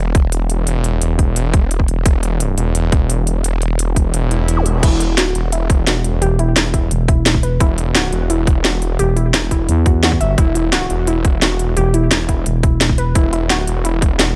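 Tense and mechanical, this short cut from a longer piece of dark, technical drum and bass drives along at 173 BPM in a straight 4/4, centred on E minor with the tuning set to A4 = 436 Hz. A snarling distorted saw bass holds down the low E from the start, its detuned, resonant tone pushed through tube saturation with a moving notch, while an overdriven, tight electronic kick and a tape-warm, layered kit of cracking snare, crisp hats and crash cymbal sit up front. The kick drops out between 4.1 and 4.8 seconds as a brief electronic swell and zap rises in the background. From 4.8 seconds a warbly, dusty pluck spins lo-fi, vintage arpeggios between E4 and E5, coloured by chorus, delay, a filter sweep and sidechain pumping. A thick, growling FM bass joins at 6.2 seconds, adding weight to the low end through to 13.1 seconds. The mix is dry, with little reverb.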